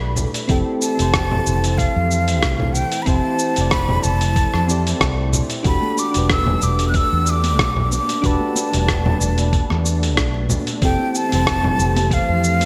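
A gently swung 93 BPM groove in 4/4, carried by a gritty, tape-warm sampler-style soul kit of cabasa, hi-hat and rim click plus a thumpy, compressed electronic kick from 0.5 seconds, underpins this smooth sunset chillout fragment, where a breathy silver concert flute with unsteady vibrato sings through delay over round, dark fretless bass with analog chorus, gentle triangle-toned electric-piano-like synth keys and a silky vintage string machine in the background, while distant, high-tuned congas join softly at 5.8 seconds as the chords move from Fmaj9 to Em11 and back inside a lush hall reverb with bright 1980s-style digital polish.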